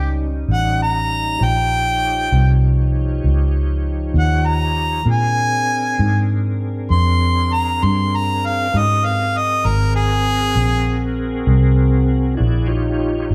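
A swaggering, laid-back slow blues in 12/8 at 66 BPM opens with an overdriven, close-miked harmonica playing a jazz-style solo up front, its scooped notes and light vibrato riding over a reedy tonewheel organ with key click, slow rotary speaker and chorus vibrato holding sustained chords. A dark, round, foam-muted vintage electric bass sits up front beneath them as the chords move from Eb9 through Bb9 and Ab9, back to Eb9 at 12.4 seconds. The harmonica stops at 11.1 seconds while organ and bass carry on to the end of this cut from a longer piece, the band captured live in one room with a large studio reverb.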